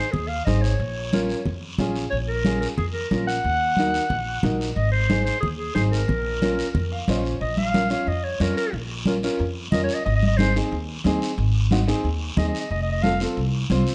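A straight 4/4 cumbia pulse at 181 BPM drives this fiery, danceable Latin excerpt in Bb minor, with damped, thick-skinned congas and a raspy, distant guiro under a growly, woody pizzicato upright bass set up front. A clear, boxy upright piano with audible action noise supplies the accompaniment and drops in a short fill at 6.7 seconds. A jazz-style clarinet with vibrato and scooped notes carries the melody through plate reverb, then takes a solo from 7.4 seconds, over chords moving among Bbm, Ebm, Ab and F in a dark, lightly reverberant mix.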